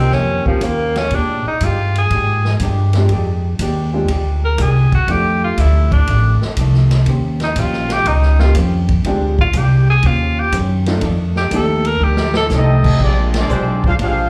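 Joyful, brassy big band swing at 121 BPM, heard as a live club set through the venue's PA, where an up-front, clear tenor saxophone with light vibrato, scooped notes and slapback echo solos over an intimate grand piano, a woody pizzicato upright bass, a dark, compressed hollow-body archtop guitar with its own slapback, and a punchy swinging drum kit whose fill ends at 12.5 seconds, when a warm trumpet section with vibrato takes the melody over a trombone section with slapback echo, and a tight saxophone section adds brief sustained chords just after a band accent at 13.3 seconds.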